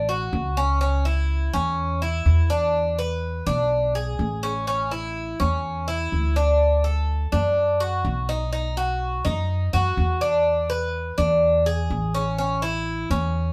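Warm and relaxed, this short excerpt of Cuban son and guajira moves at 124 BPM in a straight 4/4 in D major, with tres and upright bass playing together in one room throughout its 13.5 seconds. The acoustic tres, picked on its doubled, partly octave-paired strings, spins bright, metallic arpeggios up front, while the pizzicato upright bass sits close beside it with a woody, thumpy tone. Moderate studio reverb gives the pair a natural live-room feel as the harmony opens on a rootless D and passes through C#m, E7, A, D, B and E7 before settling back on A.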